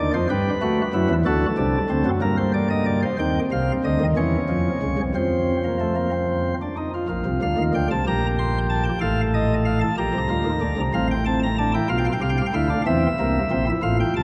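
Driving and solemn, this baroque-style three-part fugue in G minor moves in 6/8 at 62 BPM, with a solo chamber organ whose sparkling flute stops speak with a bright chiff up front, ranging from deep bass to high treble inside a vast, echoing cathedral reverb, as a 14.2-second passage cut from a longer piece that turns from minor harmonies toward B-flat and ends poised on C7.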